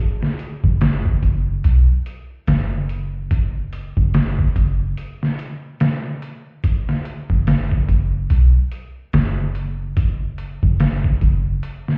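Melancholic and hypnotic, this trip hop excerpt moves at 72 BPM in 4/4 with a lazy swing on the sixteenths, tuned slightly sharp to A4 = 441 Hz. A gritty, pitched-down sampler drum kit with a thumpy kick, medium-tuned snare and hi-hat, overdriven and compressed with 12-bit crunch, runs from 0.2 to 12.0 seconds, and a deep, round, sine-like 808 bass with a fast attack and dark, decaying notes enters at 0.6 seconds. Both sit up front, yet the whole mix sounds muffled as if heard through a wall, with stone room reverb and vinyl crackle.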